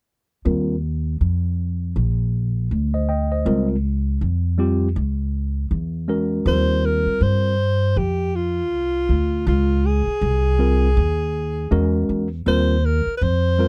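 A warm alto saxophone enters at 6.5 seconds with a soft-attack, lightly vibratoed jazz solo full of scooped notes, floating over this smooth, mellow jazz-hop excerpt at 80 BPM with a 16th-note swing in Eb mixolydian. From 0.5 seconds a worn, slightly out-of-tune tine electric piano plays the chords through a low-pass filter, with a filter sweep until the sax arrives, while a woody, thumpy upright bass on gut strings is plucked up front. The production is dark and dry, moving through Eb69, Dbmaj7#11 and E69 chords until the cut at 13.7 seconds.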